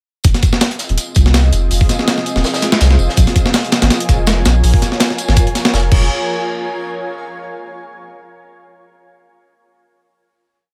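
At 0.2 s, a short, frenetic drum and bass and jungle piece bursts straight into its drop, with a deep, round sub bass and two breakbeat kits arriving together. Up front, a sampler-style kit plays a heavily chopped, pitched-up break: a thumpy kick, a medium-tuned snare, hi-hat and crash cymbal, compressed and gritty with a tape-like glow in a small room. Behind it, a second acoustic break sits further back, looped with edits, its saturated hi-hat, snare and tambourine filtered to a mid-forward crunch with a rolled-off top. The soft dub-style bass line is also up front, with a sustained tone that blends triangle and square wave under a fast attack. The sixteenths carry a light swing, and the close room ambience adds a nostalgic haze to the urgency before the drop gives way to a final hit at 6.1 s.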